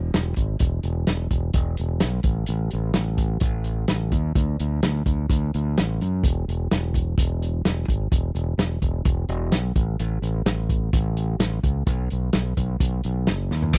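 Driving and swaggering, this classic rock excerpt pairs a growling, overdriven fingered electric bass, bright and up front, with a muffled vintage drum kit of punchy kick, dark cymbals and a rolled-off top in a dry, close 1970s-style sound, closing on a drum fill at 13.5 seconds.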